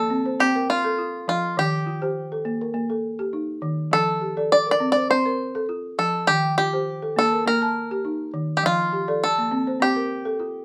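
West African traditional music in F mixolydian at 102 BPM with a light sixteenth-note swing sets a warm, hypnotic mood, as a bright, twangy bluegrass banjo played with fingerpicks carries the melody up front while a woody, round balafon struck with soft rubber mallets spins arpeggios alongside it over an alternating F and Eb harmony in a moderate studio reverb.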